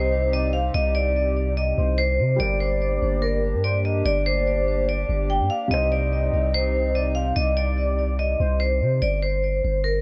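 Hard-hitting and eerie, this half-time hip hop excerpt in C minor moves at 145 BPM over Cm and Gm chords, anchored by a deep, up-front 808-style bass whose long sine notes decay from a fast attack and run until 10.0 s. A metallic, ringing vibraphone struck with hard mallets carries the melody up front with fast motor vibrato, a vintage band-limited tone, and delay, while a velvety sawtooth synth lead adds a second line in the background with chorus, vibrato and delay until 8.6 s. Beneath them, a soft felt-muted upright piano with audible action noise and a hollow, flute-like pad with slow attack and chorus hold the accompaniment and sustained chords until 9.0 s, all set in light small-room ambience.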